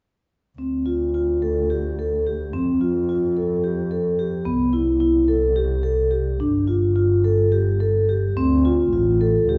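Contemporary chamber music in 7/8 at 216 BPM (eighths), this hypnotic, pensive excerpt in D minor sets a mellow, ringing vibraphone, played with soft mallets and the motor off, against a woody bowed double bass with vibrato, both sounding from 0.6 to 9.6 seconds. The vibraphone spins arpeggios over the bass line as the harmony moves through Dm7, F, C and G5 before returning to Dm7 at 8.4 seconds. A reverberant recital hall surrounds the pair, heard from further back in the room with a softened, rounded top end.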